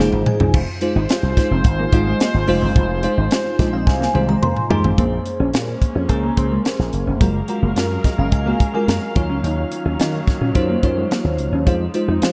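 An electric piano fill and a drum fill open this slick, urban slice of polished 1980s jazz-funk pop at 108 BPM, with the bell-like, sparkling FM electric piano, treated with phaser and subtle chorus, riding up front over a growly slap bass with an envelope filter and a crisp fusion kit with a high-tuned snare and tight kick. A clean, dark electric guitar riff sits in the background while a clear horn section with vibrato plays a second line from 0.5 to 4.7 s, and a veiled, muted string section returns with sustained chords at 5.0 s as the harmony moves from Fm7 through Bbm9, Gbmaj9 and Ebm9. Light reverb and a small room ambience give the production a dark, warm finish.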